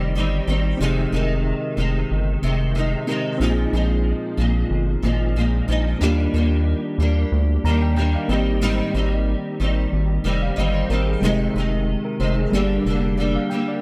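Indie bedroom pop at 92 BPM with a light sixteenth-note swing, wistful and mellow, moving from Fm7 through Bb7sus4, Ebmaj7 and Abmaj7 before landing on Gm in this short fragment of a longer piece. A bright, fingerpicked nylon-string guitar sits up front, its fresh strings coloured by ensemble chorus and a warbly pitch drift, while a reedy, clean electric piano adds direct accompaniment and a brief fill from 7.3 to 8.6 seconds. Underneath, a deep, round analog bass with a nasal, wave-folded edge and fast attack holds the low end in a dry room.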